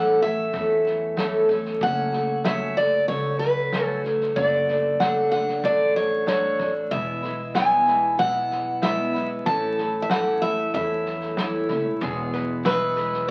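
A bright, fresh-strung steel-string guitar carries the melody up front over a shimmering, octave-doubled twelve-string picking the accompaniment and a thumpy pizzicato upright bass, joined at 0.2 s by a gritty, saturated indie drum kit sitting in the background. This peaceful, gentle acoustic folk fragment moves at 94 BPM in E mixolydian through A, F#m, D/F# and E. At 12.0 s the steel-string guitar takes a solo as a bowl-back mandolin enters with double-strung arpeggios, all heard through wet studio reverb and the dull, crackling sound of a very old 78 rpm record.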